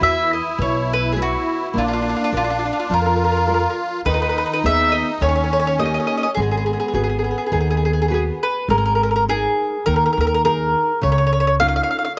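A picked, double-strung mandolin carries the wistful, romantic melody of this Italian serenade in G# minor at 104 BPM, over fingerpicked nylon-string guitar with old strings and a deep classical body, a dark pizzicato upright bass, and a reedy, shimmering musette accordion that plays its second line until 8.4 seconds, all in a moderate plate reverb.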